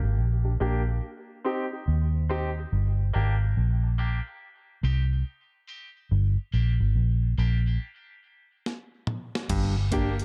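Round, punchy muted electric bass sits up front in this meditative, spacious dub reggae excerpt, under brilliant concert grand piano stabs carried through a filter sweep and tape echo, until a stop at 7.8 seconds leads into a gritty, compressed breakbeat drum fill at 8.7 seconds, followed by a stringy clav riff at 9.5 seconds and a brief, clean, mellow electric guitar with tape echo, all in a dark, dry production.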